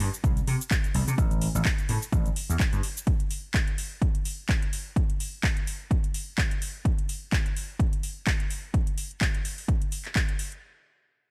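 A punchy, overdriven electronic kick drum sits up front in this brief cut from a longer filtered disco house track, layered and produced, carrying a roomy character from being re-recorded in a large space. Around it, a house drum kit of handclaps, metallic hi-hats and shaker runs through the whole passage, its hats and percussion pumping against the sidechain and roughened by overdrive. A warm, amped vintage slap bass sits close in the mix under a low-pass filter and its own sidechain pumping, but it drops out at 2.8 seconds, leaving the kick and kit to carry on alone. The sixteenths carry a light swing, and the tuning sits slightly below standard pitch. Dry, with little reverb, the groove feels sensual and nostalgic.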